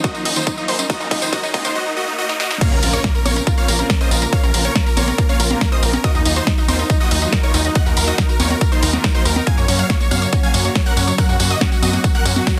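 A dense, heavily limited modern master in digital ambience frames this euphoric, driving uplifting trance excerpt, where a build-up of drum fills, a filter sweep on the pluck and a very quiet electronic riser and swell gives way at 2.6 seconds to a drop with an impact, as huge detuned supersaw chords carry the melody with sidechain pumping, low-pass filtering and tape echo over an overdriven, up-front layered kick, a tape-warm analog drum machine with punchy snare, congas, hi-hat, tambourine and crash, and a gritty, nasal driven synth bass, while a bright ring-modulated unison pluck with vintage 12-bit sampler grit, a round chorused analog pluck playing arpeggios and a bowed symphonic string section with vibrato sustaining chords sit in the background.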